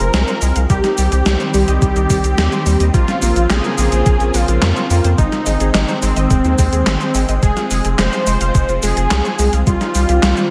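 This synthwave excerpt drives along at 107 BPM in a straight 4/4, with a gated 80s digital drum machine laying down handclaps, hi-hat, shaker and an overdriven, gated-reverb snare, joined from 0.7 seconds by a thumpy, overdriven electronic kick that sits high in the mix until 9.8 seconds. Beneath it, a round analog bass moves deep and dark, its nasal edge kept up front. A phased analog pad holds sustained chords in Bb dorian, swirling and airy with chorus and a rhythmic sidechain pump, while a bright unison pluck traces punchy, wave-folded arpeggios in the background through tape and slapback echo. Over the top, a thick, bold unison lead carries the melody with vibrato, bathed in lush chorus and tape echo. The harmony cycles through Fm, Cm, Bbmadd9 and Ab, and a lush hall reverb of 1.8 seconds gives the whole a big arena sound that feels cinematic and driving.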